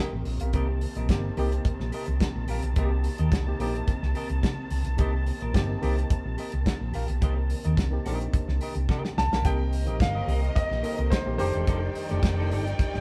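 This driving, glamorous disco cut opens on a band playing live in one stone room, its moderate reverb giving the whole a resonant, close-knit sound, and it is taken from a longer piece. At 108 BPM in a straight 4/4 and C dorian, a dry, damped 70s drum kit with a tight kick and medium-tuned snare sits up front beside a dark, round hollow-body bass played with the fingers. Over a Cm7 chord, a barky, reedy electric piano with light overdrive and medium tremolo shares the accompaniment with a clean semi-hollow electric guitar carrying a vibrato effect, while a dark string section holds soft-attacked, sul tasto chords. A drum fill from 8.9 to 9.4 seconds leads into a new section, and during that fill, at 9.2 seconds, a clear baby grand piano takes the melody, its action noise audible. A lush violin section adds a second line from 9.4 seconds, and the harmony moves to F13 at 11.4 seconds.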